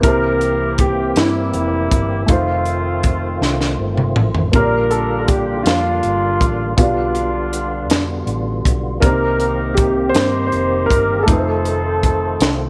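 This slow, hopeful gospel passage in 6/8 at 53 BPM opens with a mellow, vintage horn section carrying the melody through tape echo beside a polished grand piano. Beneath them, a dark, woody upright piano with audible action noise plays accompaniment, and a fat, lightly overdriven tonewheel organ with key click, chorus vibrato and slow rotary speaker holds sustained chords in the background. A round, hollow-body electric bass anchors the low end under a crisp fusion drum kit, up front with a punchy kick and high-tuned snare, which plays a fill from 3.4 to 4.5 seconds. Light reverb and studio ambience frame the jubilant mood as the chords move from C7 through F7, Bb6 and G7/B to Cm7 and back to F7.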